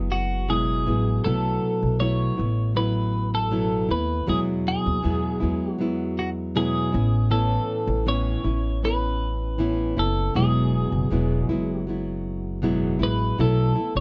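From the first second, a fingerpicked nylon-string guitar, a pizzicato upright bass and a clean twelve-string electric guitar begin together in this sunny, carefree acoustic pop fragment. It moves at an easy 79 BPM in a straight 4/4 in E major, with the harmony drifting through Eadd9, B7sus4 and Aadd9 chords. The small, bright nylon-string guitar sits up front carrying the accompaniment, while the woody, steel-strung upright bass anchors the low end just as close. Above them, the picked twelve-string electric guitar plays the melody with a compressed, twangy shimmer, sitting slightly behind the other two. Light reverb and a dark, warm production round off the sound, and the passage is cut from a longer piece, ending at 14.0 seconds on a B7sus4 chord.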